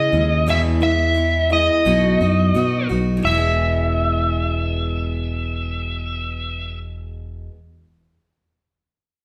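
This jangly, nostalgic rock excerpt in E major opens with an up-front overdriven slide guitar carrying a high melody, a bright picked steel-string acoustic guitar and a growly, punchy electric bass all sounding together at a straight 86 BPM in 4/4, moving from E to B and back to E in a large, wet-sounding room where the band plays live, before the slide drops away at 6.8 seconds.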